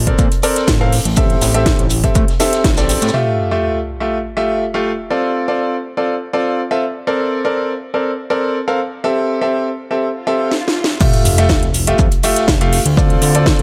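This uplifting, euphoric piano house excerpt opens on a fat, saw-edged analog bass and a bright, brilliant grand piano riff, both pumping against the sidechain, with the piano up front and trailing a dub echo over lush Bbmaj9 and Am7 chords. A punchy, overdriven electronic kick, a house kit with a cracking snare and metallic hats, and a faint acoustic jazz kit with a high-tuned snare and shaker drive the straight groove, all sitting in light reverb and small-room ambience. At 3.1 seconds the bass and drums fall away, leaving the smooth, vintage piano to carry a breakdown through Fmaj9 and Dm7 while a sub drop rumbles in the background. A swell rising from 10.2 seconds and a house-kit fill at 10.5 seconds build the tension, and at 11.0 seconds the kick and jazz kit crash back in for the drop, with the thick bass rejoining shortly after. The piece is cut from a longer track.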